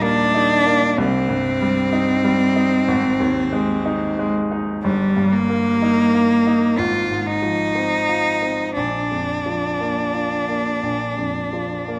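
A rich, smooth cello sings a lyrical, serene bowed melody with vibrato, close and up front, over a clear, polished baby grand piano accompaniment in this romantic classical fragment, its rubato phrasing unfolding through a recital hall's wet, lingering reverb.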